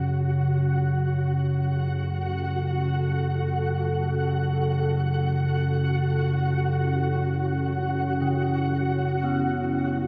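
A deep, warbling drone rumbles up front from the very start of this vast, ominous dark ambient excerpt in free time on F# minor, alongside a flickering, grainy texture with shimmer reverb. A moody, detuned pad of sustained chords with chorus joins from 2.1 s, and finally a ringing bronze gamelan-type metallophone plays arpeggios through diffuse delay in the background from 8.2 s, the whole scene steeped in a cavernous cathedral reverb.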